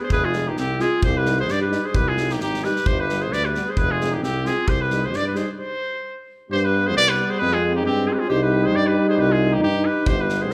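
A clear trumpet carries the melody up front in this fiery, bittersweet Balkan brass band piece, its distant, roomy classical tone ringing through a wet recital hall. The music sits in C harmonic minor in 2/4 at 132 BPM with a swung sixteenth-note feel, and it keeps speeding up as it runs, cycling through Fm, Cm and G chords across two statements of the same section. A bright clarinet plays a second line beneath the trumpet, while a soft-attacked tuba holds down the bass with a light vibrato. A mellow, breathy trombone with a vintage colour and a warm euphonium add accompaniment from the background. A loose acoustic drum kit with a tight kick and a medium-tuned snare pumps in a small room, then drops out at 5.4 s, just before a brief full stop, and returns only at 10.1 s near the end of this cut from a longer piece.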